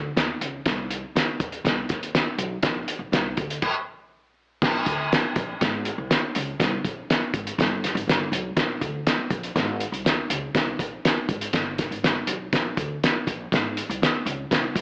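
An upright bass opens this joyful, danceable slice of uptempo 1960s-style soul at 121 BPM in a straight 4/4, its pizzicato steel strings sounding woody beneath a cloth-damped drum kit that joins at 0.2 seconds with a fat snare, tight kick, hi-hat and dark crash cymbal. The kit sits up front, muffled and gritty with a rolled-off top, while the whole recording carries light reverb and an AM radio sound. After a stop from 3.6 to 4.6 seconds, a new section begins and runs to the end of this excerpt.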